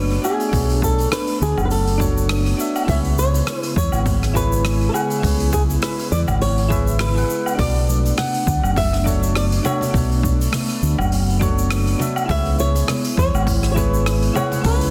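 Dense, heavily limited and lightly reverberant in a small room, this smooth sunset chillout fragment, cut from a longer piece, sets a dark, boxy flamenco guitar melody with thumb-plucked notes, finger squeak and tape echo over mellow, chorused electric-piano-like synth keys carrying 12-bit sampler grit and tape echo, an airy, breathy pad in the background, a round, up-front fingered electric bass, a soft brush kit of hi-hat, rim click, shaker and woodblock, a punchy overdriven electronic kick in the background, and bright, band-limited congas that join at 7.9 seconds, with a swung 4/4 feel moving between Bm9 and C#m7.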